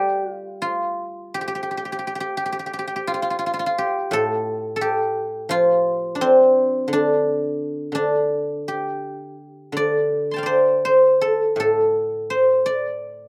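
A solo guzheng opens this short cut from a longer piece of Chinese traditional music, its plucked strings sounding ringing and silvery as they sit up front in the mix. Played with fingerpicks, the acoustic instrument carries a mellow tone that suits the elegant, flowing mood. The rubato feel gives the phrasing a free sense of time over a 4/4 metre. The guzheng ranges from A2 up to C6 across the 13.3 seconds it plays. Recorded outdoors, the sound is dry, with little reverb around the strings.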